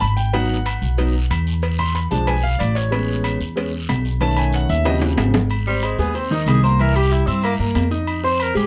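A straight 4/4 groove at 186 BPM drives this sunny, lively Afro-Cuban jazz excerpt, where a polished concert grand with audible action noise solos over woody pizzicato upright bass, ringing agogo bells and timbales, raspy guiro, and round low-tuned cowbell and bongos that drop out at 5.5 seconds, when a drum fill ushers in a key change from E major to Ab major and a forceful, scooped tenor saxophone solo with vibrato takes over in light reverb.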